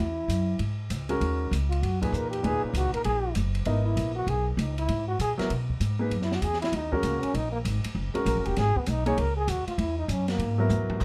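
A trombone solos with vibrato and scooped notes over a woody pizzicato upright bass, a dark-cymbaled jazz drum kit with a boomy kick and a polished grand piano with deep bass that enters at 1.1 seconds, in this spiritual, hypnotic swung modal jazz excerpt at 196 BPM, cycling between Dbm and Ebm7 under light reverb and a dark, warm production before a drum fill at 10.7 seconds.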